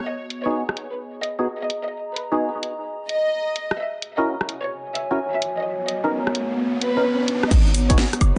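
UK garage in a moody, bouncy two-step groove at 129 BPM, with swung sixteenths, opens on a warbling, nostalgic lo-fi pad with chorus and sidechain pumping, while a dark, intimate violin section carries a smooth bowed melody through tape echo and hollow, mellow organ stabs flicker through chorus and analog delay. A tape-warm house kit sits up front with a cracking snare, hi-hat, rim click, shaker, woodblock and crash, all dulled by low-pass filtering, as chords move from Bmaj9 to F#7 and back. An electronic riser enters at 5.5 s, and at 7.5 s a punchy, tight 808-style bass and a punchy electronic kick land on G#m7 in this echo-heavy, spring-reverbed mix cut from a longer piece.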